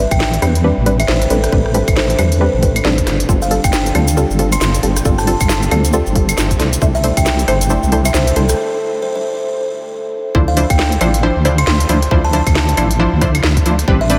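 Punchy, detuned chord stabs with chorus, tape color and analog delay open this skippy, late-night two-step garage cut at 136 BPM in D dorian, under a filter sweep and over a deep, up-front wobble bass, while a buzzing, woody kalimba carries the delayed melody. A tight electronic kick and a tape-warm garage kit of claves, crisp hats, rim click and cracking snare keep the swung groove, with a grainy tube shaker and a very quiet, moody pad adding texture in the background. The kick drops out at 7.2 seconds, ahead of the break at 8.6 seconds, then returns at 10.3 seconds for the drop onto a Dm9 chord, all soaked in huge, dreamy reverb.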